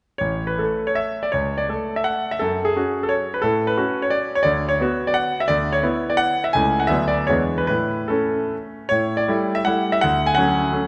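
A brilliant, up-front concert grand piano with a deep bass plays solo from 0.2 to 10.9 seconds in this short excerpt of a proud, graceful romantic triple-time dance in A major, its dotted rhythms at 140-187 BPM flowing with rubato through a moderate concert hall reverb.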